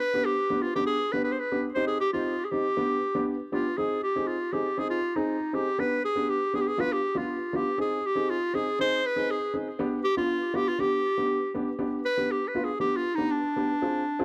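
Close, detailed microphones and a light reverb give this short klezmer passage, cut from a longer piece, an intimate, present sound. A clarinet in classical style carries the melody up front, its tone clear as it moves through G phrygian dominant at 119 BPM in a straight 2/4. Beside it, an upright piano supplies the accompaniment, dark and woody in color, with a mellow weight that sits just as near to the listener. The harmony centers on G, turning briefly to C minor and then leaning repeatedly toward A-flat before settling back, which lends the festive mood a soulful, bittersweet edge. An analog delay trails the clarinet, and from 11.8 seconds it takes a solo through to the close at 14.2 seconds.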